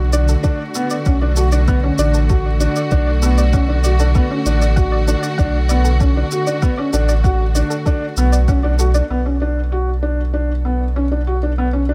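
A small, close room surrounds this hypnotic, moving piano and strings electronica excerpt in B minor, set at 97 BPM in a straight 4/4 and resting on a Bm7 chord. Up front, a felt-muted upright piano plays a mellow, intimate riff through a low-pass filter and delay, its thin felt tone giving it a vintage softness. Beneath it, a deep, round sine sub bass holds the low end, while a lush, woody studio string section sustains bowed chords with vibrato; both pump with sidechain. A dark, gentle pluck sits in the background with chorus, delay and sidechain pumping, spinning arpeggios alongside a soft electronic kick and a produced shaker. The pluck and shaker drop out at 9.1 seconds, leaving piano, strings and sub bass to carry the closing passage until 11.9 seconds.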